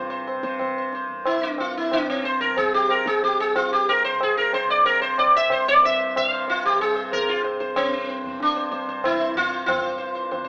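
Hindustani classical music in a devotional, serene mood, cut from a longer piece in raga Charukeshi, with the pace speeding up across its 10.5 seconds. An up-front sitar carries the melody with a bright, round, buzzing tone and shimmering sympathetic strings, over a softly plucked tanpura drone that sits low and warm in the background, while a low-tuned tabla with a short ring enters at 0.3 seconds, close and dry. The players sound live together in a moderate stone room, heard through a narrow, AM-radio-like sound.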